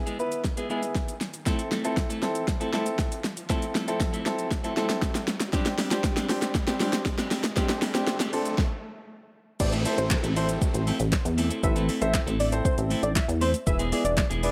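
A punchy, nasal analog bass with a filter pluck and fast attack arrives at the drop at 9.6 seconds, pumping beneath the kick in this confident, driving dance-pop excerpt in A minor at 118 BPM. Before that, a build-up carries an up-front deep house drum kit, with a deep kick, fat snare, metallic hats, handclaps, shaker and crash, playing a fill until 8.6 seconds, when a brief stop clears space for the drop. A clear, intimate baby grand piano with audible action noise plays pumping chords through Am and Csus2. A dark, clean picked electric guitar riff runs through lush chorus, and a very quiet riser and downlifter sit beneath the arrangement. At the drop, a thick, detuned unison lead with vibrato and delay carries the melody high above, all framed by light reverb and digital ambience.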